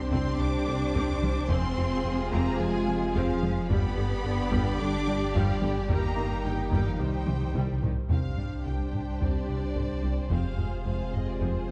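This cinematic hybrid of orchestra and electronics, cut from a longer film cue in C minor at 109 BPM, opens on a full bed of bowed strings, brass and bass: a clear, intense violin section carries the melody high above while a second, smooth and even violin line moves beneath it, and violas and a lush cello section fill the background. Dark French horns and close-miked trombones hold sustained chords, and a deep, punchy sub bass with a pitch-drop attack anchors the low end. Almost at once a rubbery, hollow square-wave bass riff joins, along with a very quiet, tine-like synth pluck playing gentle arpeggios through chorus and phaser, a barely audible double bass section, and a very quiet close taiko ensemble struck with heavy sticks. The harmony moves from Csus2 through Fm, G and Eb/G to Cm, and a drum fill from 7.3 to 8.1 seconds launches a new section that returns to Csus2 and Fm. The mood is futuristic and relentless, with a moderate concert hall reverb and a dark, warm production.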